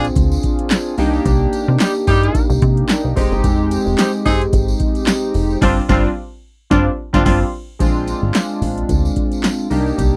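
Swung sixteenths at 110 BPM in 4/4 drive this slick, funky early-eighties boogie funk, where an overdriven, up-front electro analog drum machine with a deep kick, punchy snare and metallic hats sits over a plucky, dark analog bass, a glossy chorused polysynth sustains evolving chords such as Cm9 and Fm9, a jingly tambourine rings from a distance, and a tight, clear horn section with light vibrato plays from the start, hits the band accent at 5.6 seconds and drops out at 7.4 seconds, captured in a dry, close 1970s-style studio sound.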